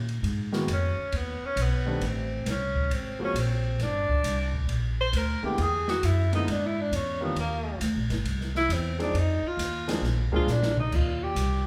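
A clear tenor saxophone carries the melody in this playful, sophisticated fragment of small-group swing and bop, entering at 0.7 seconds with a soft attack, vibrato and scooped notes, its roomy, slightly distant tone still sitting up front. Beneath it, a pizzicato upright bass with steel strings gives a woody, growly line close to the listener. An intimate grand piano comps with a natural sound, its action noise audible. An open jazz drum kit rounds out the quartet with an airy, polished feel, dark cymbals, a medium-tuned snare and a boomy kick, adding a brief fill at 10.5 seconds. The band plays live together in one room, bathed in a lush large-studio reverb, while the harmony moves restlessly through colorful chromatic changes before settling at 10.9 seconds.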